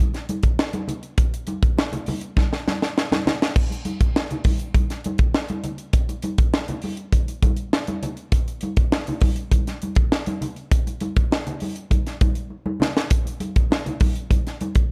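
A crisp, airy fusion drum kit with a high-tuned snare, punchy kick, hi-hat and crash cymbal anchors this driving, cool funk groove at 101 BPM in a straight 4/4, up front in a dark, dry mix, while ringing, medium-tuned congas played with soft hands come in alongside it and sit further back, and drum fills arrive at 2.4 and 12.5 seconds.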